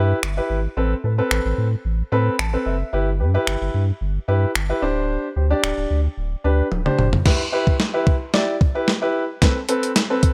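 A dry, up-front mix carries this upbeat, carefree dance-pop excerpt, cut from a longer piece, in a straight 4/4 groove. A natural-sounding concert grand piano plays pumping, sidechained chords with a fill at 1.9 seconds, over a round, sine-like sub bass that pumps along until it drops out at 7.2 seconds. A crisp, sampler-style 8-bit drum machine with a thumpy kick, a tape-warm tone and a small-room character brings crash, snaps, hi-hat, snare and toms, then fills into a build-up from 7.3 seconds.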